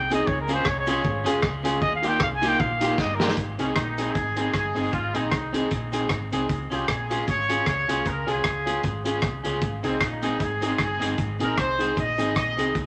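Ska at 154 BPM in Ab major, cheerful and upbeat with a light swing, opens with a breathy, whispered trumpet solo that closes on a drum fill from a muffled, lo-fi vintage kit with a punchy kick. At 3.6 seconds a roomy horn section with light vibrato takes over the melody over Ab and Db chords, while a dark, round hollow-body bass, a slightly broken-up guitar soaked in spring reverb and dub echo, and boxy, slightly detuned upright piano stabs carry the accompaniment. A grainy, very quiet cabasa sits beneath it all in this excerpt cut from a longer piece.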